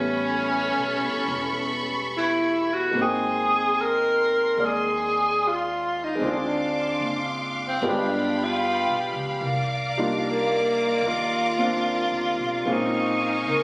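Smoky and wistful, this swung jazz ballad in C minor at 74 BPM puts a breathy, subtoned tenor saxophone up front with plate reverb, its scooped notes and vibrato floating over an intimate concert grand piano with audible action noise, lush bowed symphonic strings holding sustained chords, and a woody pizzicato upright bass, captured on a phone in the room with moderate studio reverb and compression as the harmony moves from A9 through Dm7b5 and G7b9 to Cm11.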